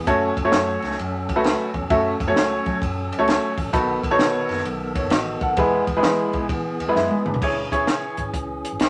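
A fat, lightly overdriven tonewheel organ opens the recording with sustained chords through a fast rotary speaker, its key click audible as it sits in the background. Beneath it, a round, foam-muted fingered electric bass, amped and punchy, anchors the low end. This is an urgent, driving slice of uptempo 1960s-style soul, cut from a longer piece, at 131 BPM in 4/4 with swung eighths in F# minor. A grand piano with long sustain comes up front as accompaniment, alongside a dry, compact cocktail drum kit with dark cymbals, a high-tuned snare, a kick, hi-hat, ride, crash and toms. The harmony moves from F#m to B7 and then E, and a drum fill at 7.0 seconds leads into a new section on C#m at 7.4 seconds. A moderate studio reverb gives the parts a modest sense of space.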